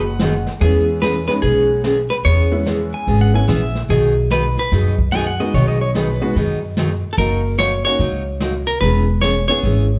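Heard through a club PA with light reverb and a small-room feel, this down-home, playful western swing snippet rides a swung eighth-note lilt over sixth chords. A hollow-body jazz guitar carries the clean, up-front melody with slapback echo, while a woody, thumpy pizzicato upright bass anchors the bottom and a dark, smooth brush kit keeps time with a boomy kick. A full-bodied jumbo acoustic guitar and a detuned, jangly honky-tonk upright piano fill in the chords, and a twangy pedal steel adds volume swells and slides as a second line before dropping out at 6.3 seconds.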